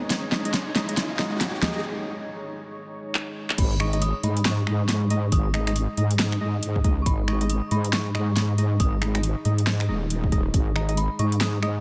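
A swung, half-time groove at 138 BPM carries this dark, meditative deep dubstep excerpt, where a moody, detuned ambient pad and a hollow, chorused organ stab with dub echo sit beneath an up-front, tape-warm house kit of fat snare, metallic hats, finger snaps, handclaps and crash, while a background riser and a brief hit of hard-hand congas with echo mark the build-up, until the drop at 3.6 s brings in a deep layered kick, a heavy, saturated wobble bass up front, and an eerie, inharmonic synth bell melody with phaser and echo.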